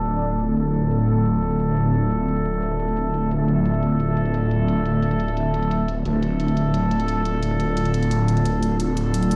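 Dark and aggressive, this short cut from a longer dark technical drum and bass piece runs in a straight 4/4 over a single D minor chord. A phased, detuned saw bass sits up front on a sustained low D, its thick, swirling, saturated tone anchoring the whole passage. Above it, a swarming drone holds sustained chords with a slow attack, a tense, warbling, granular texture that evolves through its built-in reverb. A mellow brass ensemble plays soft, loose stabs under a low-pass filter and tape echo, and both the brass and the overdriven, bright electronic hi-hat, which enters at 0.1 seconds, are shaped by filter sweeps across the passage. A background electronic swell opens the cut and ends by 0.6 seconds, and the mix sits in a large studio reverb, as if played on a big sound system in a bare room.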